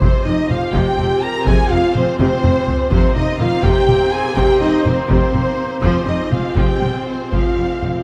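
Dark and epic, this 8-second cut from a longer orchestral film score moves in 6/8 at 82 BPM in F minor, resting on a single Fmadd9 chord as mellow French horns and distant woodwinds sustain the harmony, a soft-attack violin section carries the melody in the background over a dark, far-off second violin line, close violas with portamento accompany, lush cellos and woody double basses hold a low F, and hard-stick taiko drums play throughout with a fill at 2.2 seconds, all set in a moderate scoring-stage reverb.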